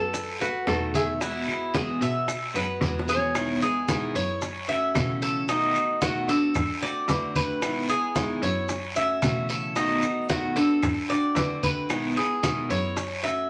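A straight 4/4 groove at 112 BPM drives this danceable Cuban son and guajira passage in E major, with low-tuned congas struck with hard hands and a thick-skinned tone. Round bongos, a raspy guiro and grainy, mellow maracas fill out the percussion, while woody claves sound distant, as if in a large room, from 0.7 seconds. A fingerpicked nylon-string guitar carries a short classical melody, complete with finger squeak, that ends at 3.6 seconds, just after a drum fill beginning at 2.8 seconds. Up front, the Cuban tres spins metallic arpeggios on its doubled strings, some of them in octaves, over a picked steel-string acoustic guitar picking out the accompaniment. A biting, intense bowed cello plays the bass line from a distance with light vibrato, under a cycle of Emaj7, F#m7, B7 and D7. Moderate studio reverb gives the whole a warm mood in this section cut from a longer piece.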